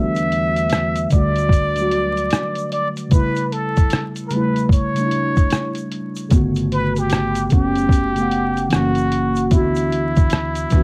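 Lo-fi hip hop fragment at 75 BPM with a lazy 16th-note swing, nostalgic and dreamy, moving through jazzy chords from Em11 and A7 to Gmaj9#11 before closing on F#7 and D69. A plunger-muted trumpet sings the up-front solo melody with wah-wah inflections, vibrato and scooped notes, over soft, intimate felt-like synth keys coloured by chorus and phaser, and a dark, woody pizzicato upright bass with a touch of transformer saturation. From 0.2 s a muffled, pitched-down sampler drum kit thumps in with kick, hi-hat and rim click, and a grainy egg shaker sits in the background, all wrapped in cassette tape warmth, vinyl crackle and a small-room ambience.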